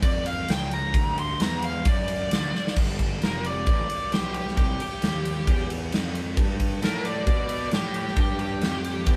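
A huge arena drum kit with bright cymbals, a punchy kick and a pumping hall sound drives this raunchy, gritty blues rock and southern rock excerpt at 133 BPM, as a smooth overdriven lead guitar solos up front with analog delay over a growly fuzz picked bass, a drum fill landing at 2.5 seconds before the band moves through G7 and C in a live room with light reverb.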